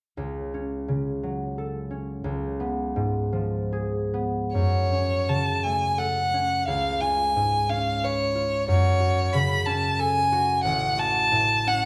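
Melancholic and yearning, this romantic classical duo for violin and harp unfolds in F# minor, with a rubato 6/8 feel at roughly 46-62 BPM counted in dotted quarters. The concert harp opens alone at 0.2 seconds, its fingerpicked, ringing accompaniment sitting up front with an acoustic, warm tone and ranging from low A1 up to B4. At 4.5 seconds the violin enters with the melody, a single bowed player whose clear, smooth and even line carries vibrato in the upper register between C#5 and B5, placed up front and slightly louder than the harp. The harmony moves between F# minor and C#7, settling toward F#m/A near the close, while the playing of both parts breathes with the flexible tempo. A moderate recital hall reverb gives the pair a natural sense of space, and the passage is taken from a longer piece, ending at 11.9 seconds.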